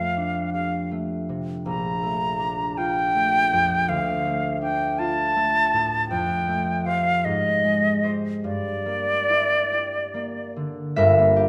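A wet recital-hall reverb with a 1.5-second decay surrounds this hazy, mysterious excerpt from an impressionist classical duo in G minor, moving in a slow, rubato 6/8 at 46-55 BPM counted in dotted quarters. An airy, close-miked concert flute sits up front and sings an expressive melody with vibrato and soft attacks, while a ringing, fingerpicked concert harp, also up front, spreads a warm accompaniment from G1 to E5. The chords drift from F69 through Bbmaj7, Dm and Abmaj7 to a closing Gm6, and the harp sounds alone after the flute stops at 10.5 seconds, until 11.5 seconds.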